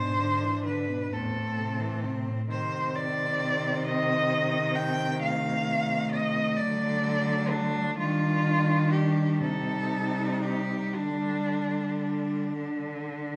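Four bowed cellos open together in this yearning, melancholic classical excerpt in a rubato 6/8, with a rich, smooth melody cello up front singing with vibrato until 12.6 seconds over an expressive second line that slides with portamento, a close, warm, even accompaniment, and a distant, sliding bass cello, all bathed in the lingering reverb of a recital hall.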